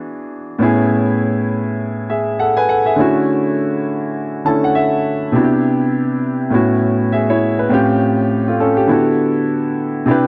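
Warm and smooth, this brief soul passage cut from a longer piece moves at 101 BPM in 4/4, with a gentle swing on the sixteenths and a home key of A major. A clear concert grand piano plays alone throughout, reaching from A2 up to A5, with deep bass and an open, up-front presence. The harmony is lush and jazz-tinged, opening on E9 before settling into Amaj7 and Dmaj9. A short piano fill at 4.2 s leads into a second section at 5.3 s, where the chords shift through Cmaj9, A69 and an altered A7 before landing on D69. The sound is a dry, close 1970s-style studio recording with a light touch of reverb.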